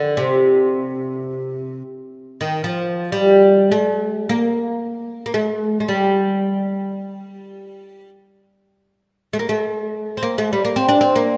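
A solo oud opens this short passage of Arabic maqam music and plays alone for the full 11.4 seconds. Its plucked, fretless double strings have a woody, deep tone, set up front in a moderate concert-hall reverb. The mood is melancholic and hypnotic, like a moment lifted from a longer piece.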